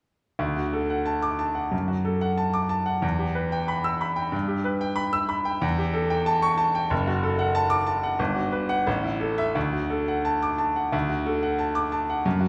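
Brilliant and heroic, this short classical excerpt is a virtuoso piano study in D major, moving at 92 BPM in 2/4 with a flexible, rubato feel. A bright grand piano plays alone from 0.4 to 12.5 seconds, sitting up front with an open, brilliant tone and short sustain, ranging from F#1 up to E6 across a progression that travels from D through E minor, A7 and Gmaj7 before resolving back to D at 9.6 seconds. The wet reverb of a recital hall, with a 1.4-second decay, surrounds the instrument with the spacious air of a church or concert hall.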